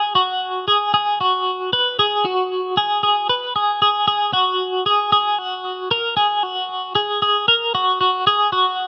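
A straight, even 4/4 pulse carries this short indie pop excerpt, which runs from 0.0 to 8.9 seconds. A lone twelve-string electric guitar plays throughout, its picked line staying between F#4 and B4. The tone is clean and compressed, with a tremolo effect shimmering over its twelve strings, and it sits up front in the mix. The room adds little reverb, so the sound stays dry and close, with the rough character of a home demo. The mood is bright and breezy.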